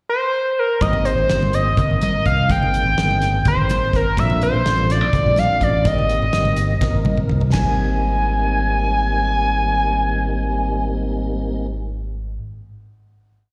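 A straight 7/8 groove at 250 BPM drives this funky, bright electric jazz fusion piece in Ab major, where a screaming, gritty, guitar-like synth lead with slapback echo states hook phrases alone in the pickup before the band enters at 0.8 s: a growly, up-front fingered electric bass riff, a dry 70s drum kit with a fat snare and dark cymbals, hard-hand congas in the background, and a mellow, round tonewheel organ comping rootless Abmaj9 and Bbmaj9 chords through a slow rotary speaker with key click, until a drum fill at 6.8 s leads into a final chord from 7.5 s, all heard as a live gig through the venue's PA in a recital hall.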